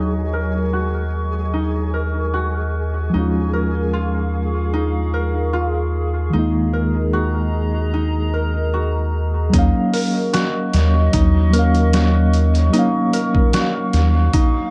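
Melancholic and brooding, this trip hop excerpt drifts at 75 BPM in Eb minor. A reedy electric piano with tremolo and tape echo carries the accompaniment over a warbling, nostalgic pad with chorus, phaser and lo-fi sampler grit, while a mellow concert harp rings out fingerpicked arpeggios through a low-pass filter and analog delay, and a round, deep analog bass sits up front with tube saturation. A grainy, flickering texture hovers in the background until 9.6 s, and at 9.5 s a gritty, pitched-down sampler drum kit enters with a thumpy kick, all set in an echo-heavy mix with light digital ambience.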